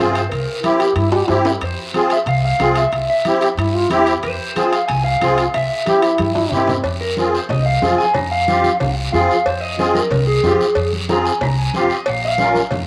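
Cumbia, driving and danceable and cut from a longer piece, in which a dark, slightly broken-up electric guitar carries the melody through cassette tape echo over a shimmering musette accordion up front, a woody pizzicato upright bass, raspy guiro, ringing timbales and cowbell, and soft-handed congas in the background, while a breathy, whispered trombone adds a second line until a clean electric guitar solo takes over at 6.8 seconds, captured as a home cassette recording with light reverb.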